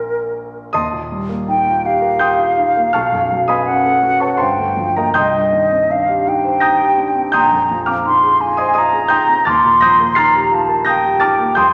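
In a rubato three-four lilt, this dreamy, luminous impressionist duo for flute and grand piano drifts through colorful extended chords, moving from Bb9sus4 to Ebadd9 and coming back to Ebadd9 at 9.5 seconds. A mellow silver concert flute carries the melody up front, its pure metallic tone shaped by expressive vibrato and tongued notes, while a smooth, vintage grand piano accompanies across a broad span of its range, also up front. A wet scoring stage reverb surrounds the pair, and the passage is cut from a longer piece.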